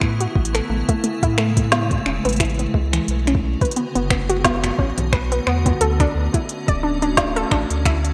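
IDM in B dorian at 88 BPM, this eerie, cerebral excerpt is cut from a longer piece and sits on a 4/4 groove with a light swing on the sixteenths. An icy, crystalline glass pad holds sustained chords through Amaj7, Bm7 and Dmaj7, its detuned, airy tone thickened by chorus and its own reverb and pumped by sidechain compression. Beneath it a round sine sub bass supplies a deep, mellow foundation, while a soft, overdriven electronic kick and an up-front kit of congas, finger snaps, smooth hi-hats and a woody snare add grit, the kit also carrying gated reverb. Entering at 0.2 seconds, a warbling, lo-fi sawtooth pluck spins arpeggios up front, its dusty, evolving character colored by chorus and delay. The bright 1980s-style digital production places the parts in a lush hall reverb.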